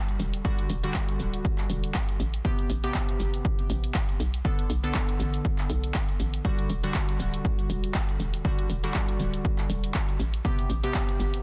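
A dry, dense and heavily limited mix with little reverb opens this late-night deep house fragment, cut from a longer piece and moving at 120 BPM in 4/4 with a light 56% swing on the sixteenths in E minor. Warm analog keys play stabs from the very start, their detuned square, sawtooth and triangle tones wave-folded and bright, with chorus, delay, a filter sweep and sidechain pumping. A punchy, tape-warm analog drum machine, re-recorded in a small room, adds handclaps, hi-hat and shaker from 0.1 seconds. A hollow, bouncy FM bass with a fast, knocking attack follows at 0.2 seconds, sidechain pumping low in the register. An up-front, layered electronic kick arrives at 0.4 seconds and punches hardest in the mix. Underneath, the harmony cycles through Em9, Am9 and Bm7, keeping the mood deep.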